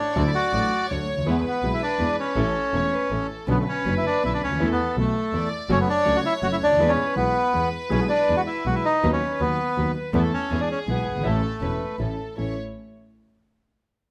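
A reedy, up-front bandoneon carries the melody from the opening, with a soft, floating violin section playing sul tasto as a second line in this nostalgic, passionate tango excerpt, set in a rubato three-beat feel. From 0.2 seconds a mellow, vintage-sounding grand piano with audible action noise and deep bass lays down the accompaniment, a bowed double bass adds a biting, earthy low end with light vibrato, and a very quiet, woody string section adds stabs. Close, detailed microphones and light reverb frame the studio sound as the harmony moves from D through E and F#m to settle on A at 11.2 seconds.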